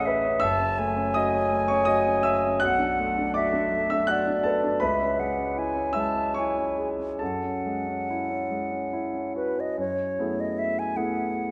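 A gently rubato three-beat sway carries this hazy, mysterious impressionist duo, a short passage cut from a longer classical piece. A pure, straight-toned concert flute with a crisp attack sings the melody over a clear, up-front grand piano whose accompaniment reaches down into deep bass, moving through minor seventh and ninth harmonies. Both sit in the lingering wash of a scoring-stage reverb, and at 9.8 seconds the music shifts into a new section on a rich minor eleventh chord.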